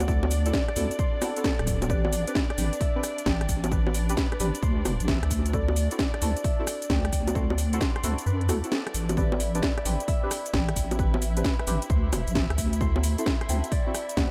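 This is a moody, late-night slice of two-step UK garage at 132 BPM in A dorian, cut from a longer piece, with a swung sixteenth-note feel and harmony that moves between D7 and Am11. A mellow, thumb-plucked Celtic harp carries the melody with a ringing tone, its notes trailing into dub echo, while a rich violin section holds smooth, vibrato-laden chords far in the background, pumping against the sidechain. Underneath, a deep, soft wobble bass with a dark, chorused square-and-sine tone sits up front, and short, wave-folded chord stabs add a phased, chorused and echoing color. The house kit brings a cracking snare, metallic hats, rim clicks, bongos and shaker with tape-like warmth and a touch of analog delay, alongside a punchy electronic kick that drops out between 8.3 and 9.2 seconds before returning. The mix is dry in terms of reverb but heavy on echo, giving the track a close atmosphere.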